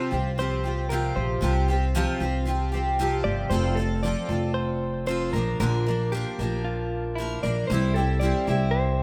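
Easy-going and heartfelt, this excerpt of acoustic pop in F major moves at 115 BPM, with a bright, full-bodied, double-tracked steel-string acoustic guitar picking the accompaniment with audible finger squeak, a woody, thumpy pizzicato upright bass up front from 0.1 s, and a clean, compressed, direct-recorded electric guitar carrying the melody through spring reverb and delay, all set in a small room with a rough home-demo feel as the chords move from Csus4 to F at 3.5 s, then Bb and C.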